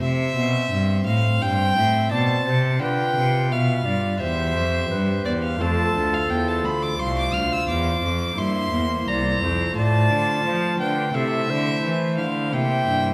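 A vinyl crackle sits over a reverberant recital hall sound, giving this fragment of a baroque-style sonata movement an aged quality. The piece moves at a steady 86 BPM in straight 4/4 in C major, with a flowing, introspective mood and a harmony that passes from C through G7, F and Am/C before settling on C7. A pipe organ on a nasal cornet solo stop provides the continuo accompaniment, and a single bowed cello with a reedy gut-string tone carries the bass line from the first moment. A lone violin, close and up front with a rich period-style sound, plays a second line high above. At 1.4 seconds an airy wooden baroque flute enters with the melody, its straight tone and crisp attack adding lifted, bright highs to the ensemble.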